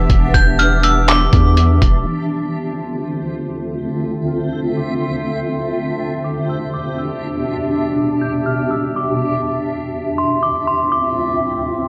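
A half-time hip hop pulse in 4/4 drives this hazy, melancholic cloud-rap excerpt. A compressed, pitched-down sampler-style kit of thumpy kick, hi-hat and handclaps sits up front with a deep, sine-toned 808-style bass, until the drums drop away at 1.9 seconds and the bass at 2.1. Throughout, a blurred, granular pad pumps through Em7 and Dm9 chords, a metallic, inharmonic FM bell rings a high melody through chorus and tape echo, and a reversed, detuned texture swells softly in its own reverb beneath them, while from 2.1 seconds a filter sweep runs to the end.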